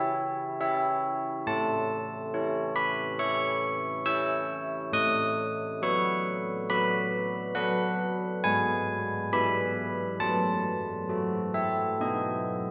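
Classical church-bell tune for solo carillon, serene yet festive, its bronze bells ringing up front with a minor-third overtone and iron clapper strike across a range from F#3 to E6, bathed in a recital-hall reverb through chords moving from C#m to A, B7/A, E/G#, F#m and B in this short passage cut from a longer piece.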